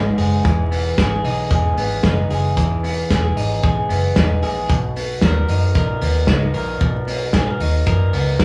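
Jangly indie pop with a bright, breezy mood at 113 BPM in B major, this short excerpt features twangy, slightly broken-up picked arpeggios on an electric guitar through a small old amp, a dark, round, foam-muted vintage fingered electric bass, and an up-front, mid-forward loose indie drum kit with hi-hat, tight kick and medium-tuned snare joining at 0.2 seconds, all moving from Emaj7 to Bmaj7 with the live-in-one-room feel of a wet studio reverb, vinyl crackle and studio ambience.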